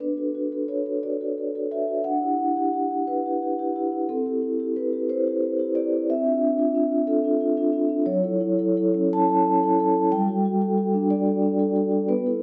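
A solo vibraphone played with soft mallets carries this contemporary classical excerpt alone from 0.0 to 12.4 seconds, its mellow, ringing tone shimmering with a fast motor vibrato and sitting up front in the mix. The mood is reflective and hypnotic, moving in a lilting compound metre with a free, rubato feel. The harmony drifts through colorful chords, from D6 at the start through Em9/D, C6 and Dmadd9 to a rootless F#m7 at 8.1 seconds and an open Gsus2, the borrowed and suspended sonorities giving the passage a floating, unresolved quality. The instrument spans a moderate range from its low register up into the upper octaves, with a smooth, metallic glow. A recital hall reverb with a long tail surrounds the playing, and the dark production lends the whole fragment, cut from a longer piece, an intimate, dusky atmosphere.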